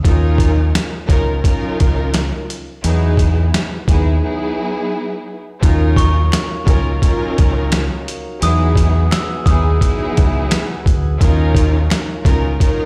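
Reflective and tough, this boom-bap hip-hop excerpt in Eb minor moves at 86 BPM with a swung feel, as gritty, pitched-down sampler drums with a thumpy kick sit up front over a round, punchy fingered electric bass and a tape-worn, bowed string section with vibrato and portamento, breaking at 4.2 seconds before a very quiet tonewheel organ with key click enters at 5.6 seconds, joined by a dark, bell-like glockenspiel melody and close, soft finger snaps, all heard through the stone reverb of a bare room.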